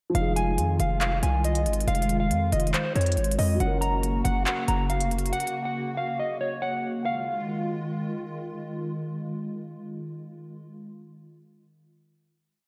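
A dreamy, reverb-soaked hall sound frames this short, eerie trap piece at 139 BPM in a half-time feel and F phrygian, where a mellow, clean electric guitar loops a fingered melody with delay over boxy, held grand piano chords with subtle chorus, a hollow, flute-like pad with ensemble chorus, crisp trap drums with handclaps and fast hi-hat rolls, and a heavy, saturated 808 bass with pitch slides that drops out at 5.3 seconds before the pad sustains a final Fm7 chord from 7.1 seconds.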